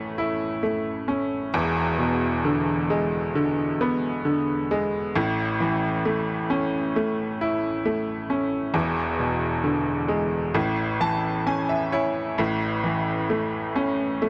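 Heartfelt and emotional, this slow pop passage in A major moves at 66 BPM, with a solo upright piano carrying it alone across the 14.3 seconds, spanning its low register up to the middle-high keys over a simple A to E7 harmony. The piano sounds bright, woody and worn, slightly detuned and sitting up front, with a fill arriving at 10.6 seconds before the opening section returns at 12.4 seconds. Light reverb touches a dry, close, 1970s-style studio sound.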